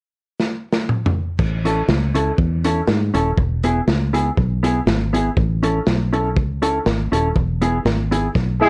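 This cheerful, upbeat ska excerpt opens with a drum fill at 0.4 seconds from a crunchy breakbeat kit, saturated and gritty in a small room, with dark cymbals, a tight kick and a medium-tuned snare. At 1.4 seconds a round, foam-muted fingered electric bass arrives, and a mellow, clean electric guitar, compressed and fingered, joins just after to carry the accompaniment. In a straight 4/4 feel, the parts alternate between A and E chords, with another drum fill arriving near the end. In the final moment, at 8.6 seconds, a dark horn section enters with the melody, distant and roomy with light vibrato and octave doubling. Light reverb and a cassette tape character colour the whole recording.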